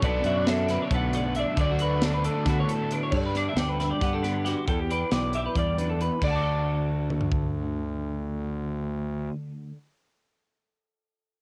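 Straight eighths at 271 BPM fall in an odd 7/8 metre, giving this playful, wistful fragment of math rock and midwest emo in D major its tumbling, lopsided pulse. A crisp fusion drum kit sits up front with a punchy kick, medium-tuned snare, hi-hat, toms and crash in an airy, polished room, dropping out at 7.4 seconds. A fuzz-soaked fingered electric bass, also forward and overdriven, anchors the low end beneath a dark, double-tracked overdriven guitar riff that stays in the background and stops at 3.1 seconds. Two twangy, slightly broken-up guitars through a small old amp carry the top: one plays a high melody with subtle chorus, the other spins bright arpeggios trailed by tape echo. A clean, compressed twelve-string electric guitar picks its accompaniment through a shimmering ensemble chorus as the chords move from Bm7 and D6 to Gmaj7 and Em9 before settling on D. Light reverb and the grain of a home cassette recording lend the whole fragment a lo-fi, wistful haze.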